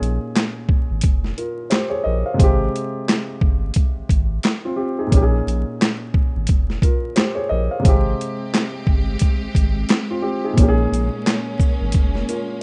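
Confident and soulful, this boom-bap hip-hop excerpt moves at 88 BPM in 4/4 with a 16th-note swing, cycling between Bbm7 and Abmaj7. A sampler-style drum kit sits up front with compressed, pitched-down grit, pairing a thumpy kick and high-tuned snare with handclaps, hi-hat and shaker. A concert grand piano carries the accompaniment from Bb2 to F5, its short-sustained tone colored by cassette tape. Underneath, a round sine sub bass holds sustained low notes between F1 and Bb1. At 7.8 seconds a lush bowed string section joins with smooth, vibrato-tinged sustained chords, and the whole take has the feel of a rough home demo, dusted with vinyl crackle and a dull top end.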